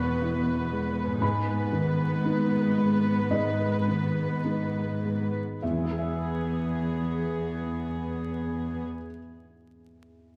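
Cinematic, emotional film score for orchestra in E major, tender and hopeful, moving at a slow, rubato 49-61 BPM that slows over the first 5.6 seconds of this short cut from a longer piece. A felt-muted upright piano, dark and intimate, plays accompaniment until 10.4 seconds beside a rich, floating viola section bowed sul tasto up front, while a sul tasto cello section with light vibrato holds the bass and a very quiet, ringing concert harp plays arpeggios. The harmony moves from E to G#m and back to E, all set in a wet scoring-stage reverb with vinyl crackle.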